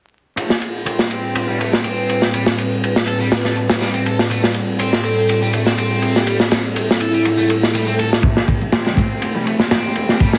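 Heavily compressed and dusted with vinyl crackle, this gritty, funky breakbeat excerpt sits in a small room with a moderate plate reverb. A crunchy, saturated drum kit with dark cymbals and a tight kick sits up front from the start, beside a bright, scooped high-gain electric guitar riff under a filter sweep, and a warbling, nostalgic lo-fi pad joins at 0.9 seconds with sustained chords that pump against the beat. A mellow vibraphone melody with an AM radio tint drifts in at 5.0 seconds, a very quiet swell and riser arrives at 7.5 seconds, and a build-up from 8.2 seconds brings in a woody pizzicato upright bass in the background and an overdriven electronic shaker.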